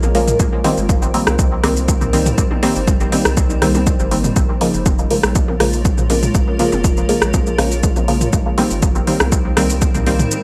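Hazy and cavernous, this dub techno fragment, cut from a longer piece, moves at 121 BPM in a straight 4/4, circling from Cm7 to Bbm7 and back to Cm7 at 8.3 seconds. Up front, a muted, detuned sawtooth chord stab with a filter pluck and short decay carries chorus, phaser, 12-bit sampler grit and dub echo, pumping against the beat. Beneath it, a soft, round sub bass with transformer saturation holds the low end, while a blurred, evolving granular pad with slow attack and long release sits in the background, bathed in its own reverb. A deep house kit of metallic hats, rim click and shaker runs from the start, joined at 0.4 seconds by a punchy, overdriven electronic kick, with very quiet electronic toms tucked underneath. The whole has a dry, gritty hardware character with only light room reverb.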